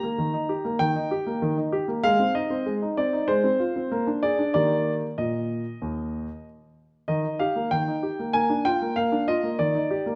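Elegant and serious, this short excerpt from a classical-period piano sonatina moves at a measured 96 BPM in 4/4 with a straight feel, set in E-flat major. A solo grand piano carries the whole passage, its tone clear and present, sitting up front and ranging from Eb2 to Bb5. The harmony is plain and poised, moving from E-flat through A-flat, F minor over A-flat and a B-flat seventh before settling home on E-flat at 4.5 seconds. A second section begins at 7.1 seconds, turning to B-flat before closing again on E-flat at 9.6 seconds. A wet recital hall reverb surrounds the instrument, giving each phrase a lingering, resonant tail.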